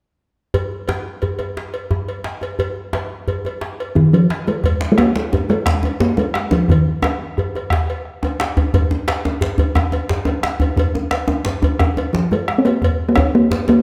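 A metallic cowbell and a tight, cracking djembe open this driving, powerful West African drum ensemble passage in 12/8 at 0.5 s, joined at 4.0 s by a resonant, up-front talking drum carrying the melody, then by a round, compressed, saturated bombo and a deep second djembe struck with hard hands, the ensemble sitting in a moderate recital hall reverb before a drum fill at 12.1 s.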